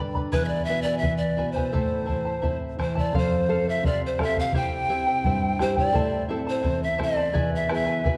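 Bathed in a wet scoring-stage reverb, this excerpt of Andean folk at 85 BPM in 2/4 and A minor feels festive yet melancholic: a reedy bamboo pan flute with vibrato, a soft attack and a touch of chiff carries the melody up front from 0.3 s, over a full-bodied, fingerpicked nylon-string guitar with a deep classical tone, a shimmering, fingerpicked, double-strung charango with some octave-doubled strings, and a round, vintage, band-limited bombo entering at 0.2 s.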